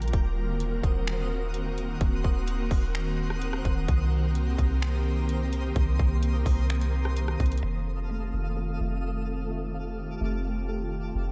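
Atmospheric cloud-rap hip hop at 128 BPM in a half-time 4/4 feel, dreamy and blissful, built on an ethereal, airy pad of detuned sustained chords that warble with ensemble chorus and pump under sidechain, above a soft, round 808-style bass sitting dark and up front. A trap kit of finger snaps, metallic hi-hats, rim clicks and a hard-clipped kick runs until 7.6 seconds, while a twinkling granular texture adds octave-up shimmer high above. At 7.6 seconds the chords move to F7 and a glassy, crystalline wavetable pluck enters in the background with arpeggios through analog delay and a filter sweep, carrying this fragment of a longer piece to its cut.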